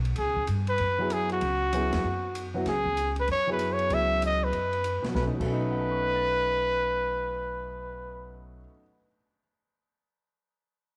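Woody, thumpy pizzicato upright bass on gut strings and a dark, smooth acoustic drum kit with a punchy kick open this relaxed, playful slice of small-group swing. Almost at once, a clear trumpet with light vibrato steps up front to carry the solo melody. A polished, present baby grand piano joins the accompaniment at 1.0 s, and the drums drop away at 5.5 s, just after the tune moves into a new section, with the group set in a small room under a moderate echo-chamber reverb.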